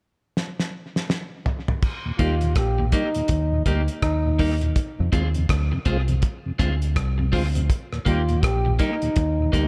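A round, deep dub fingered bass anchors this uplifting, laid-back roots reggae excerpt in Eb major at 82 BPM with a swung 16th feel. A mellow tonewheel organ with key click, chorus vibrato and slow rotary speaker enters in the background at 2.1 seconds. At 2.2 seconds the bass arrives together with a vintage trombone line with tape echo and a slightly broken-up picked electric guitar with lush chorus and echo. All of this sits over a cloth-damped, gritty drum kit with a fat snare and dark cymbals that opens with a fill at 0.4 seconds, moving between Eb and Fm in a dark production with light studio reverb.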